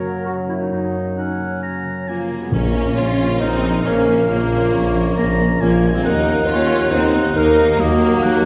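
In a straight 4/4, this adventurous, determined heroic film cue opens with dark, roomy French horns and bright trombones holding sustained chords over ringing harp arpeggios, while mellow flutes and a clarinet carry second lines, and a clear, solo oboe joins at 1.2 seconds. At 2.1 seconds a focused, lush violin section takes the vibrato-laden melody, shadowed by a softer second violin line and supported by cellos. At 2.5 seconds violas, tuba and rich double basses with expressive portamento enter, along with a brief, hard-mallet timpani stroke, all set back in a wet scoring-stage reverb.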